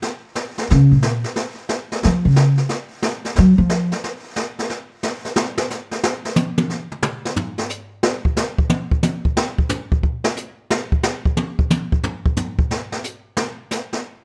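Brushed drums open this swinging, sophisticated jazz passage at a brisk 180 BPM in 4/4, with a 65% swing on the eighth notes. An upright bass joins at 0.7 seconds for a short solo, played pizzicato with a woody, dark tone from its steel strings, and it falls silent at 3.9 seconds. The drum kit carries on with brushed snare, hi-hat, kick and toms, its medium-tuned snare and boomy kick sounding natural in a studio room. From 5.4 seconds the drums take a solo that runs to 14.0 seconds. Both instruments sit up front under light reverb, with the bass mixed louder than the drums, and the passage is cut from a longer piece.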